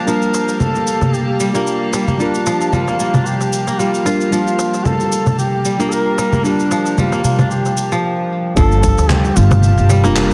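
Earthy and hypnotic, this short slice of organic downtempo moves at 113 BPM in G minor with a gentle 16th-note swing, resting on a Gm7 chord. A deep, nasal chord stab with a fast, decaying pluck and chorus pumps alongside distant, bowed strings that also pump as they float sul tasto through a low-pass filter, while a bright, crisp kora rings out fingerpicked arpeggios with delay. Over them, a mellow, roomy duduk sings a folk-style solo melody with scooped notes and its own echoing delay. Gritty, tape-tinged electronic shaker, congas and handclaps with a clipped snare sit in a large room, joined by a close, dry darbuka played with soft hands on its clay shell and natural skin. At 8.6 seconds a woody, dark pizzicato upright bass steps up front, and a tight, overdriven electronic kick sounds briefly in the background until 9.0 seconds. A lush hall reverb surrounds the dense, heavily limited modern mix, and the passage is cut from a longer piece.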